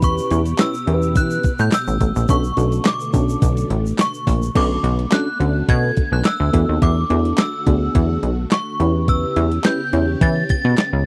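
Danceable and slick, this short cut of early-eighties boogie funk in B minor moves at 106 BPM in a straight 4/4, led by a chiming, inharmonic FM synth chime melody over a soft, warbling FM electric piano, a swirling phased string machine in the background, a punchy, plucky analog bass and a thumpy, sampler-style 8-bit drum machine up front with handclaps, hi-hat and crash, while a grainy tube shaker sits behind until 4.5 seconds, all in a dry, close studio sound cycling through chords like A9/E, Bm9 and E9sus4.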